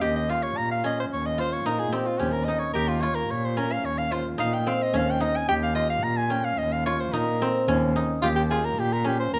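Heard in the moderate reverb of a recital hall, this playful, hopeful fragment of contemporary chamber music in 5/4 rests on a single Eb9 chord while a bright, breathy soprano saxophone sings the melody up front with light vibrato, a guzheng played with fingerpicks rings out silvery arpeggios, and a bowed, muted cello carries the bass in a dark, veiled tone with soft attack and portamento.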